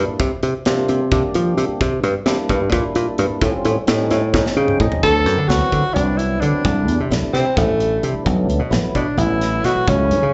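In a straight 7/8, this slick, soaring electric jazz fusion excerpt from a live club gig, heard through the venue's PA with a dulled top end, rides on a bright, punchy thumbed slap bass up front, a polished kit with a high-tuned snare and punchy kick, and a fat, clean tonewheel organ through a slow rotary speaker with plate reverb and slapback echo; drum and organ fills at 4.3 s lead into a breathy tenor saxophone solo entering at 5.0 s with vibrato, scooped notes and a smooth top.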